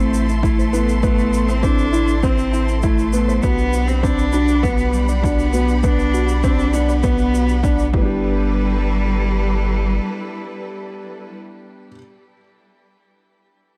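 A dark, warm production with light small-room ambience frames this tender, luminous piano and strings electronica excerpt, moving through Am, Gmaj7/B and G69. A felt-muted upright piano plays a mellow riff and a bowed solo cello carries a focused, vibrato-rich melody, both with delay and shimmer reverb, while a lush studio string section holds sustained chords with sidechain pumping and its own shimmer. A deep, round sine sub bass, also pumping, and a punchy, overdriven electronic kick drive the drop, joined by very quiet, soft pluck arpeggios and a brushed shaker that stops at 7.9 s.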